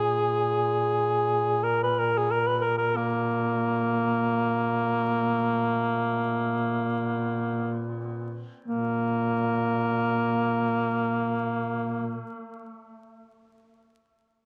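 Caucasian folk lament in free time, this mournful, solemn fragment from a longer piece sets an up-front cor anglais, mellow with light vibrato, a smooth top, classical phrasing and a touch of analog delay, singing its melody over a distant, roomy duduk drone with folk-style vibrato, both sounding from the opening through 12.2 seconds as the pace slows until 8.7 seconds, all within a dark production carrying a springy reverb and vinyl crackle.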